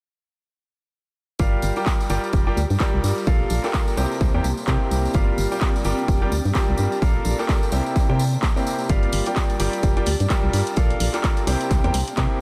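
Piano house cut from a longer piece, energetic and soulful with a swung feel, as a bright, up-front concert grand with audible action noise plays a riff through tape echo and sidechain pumping over a hollow, organ-like FM bass, an overdriven electronic kick, tambourine, and analog drum-machine handclaps and hi-hat, while a cloudy granular pad drifts in the background from 2.6 seconds over a Gm7, Bbmaj7 and C7 progression.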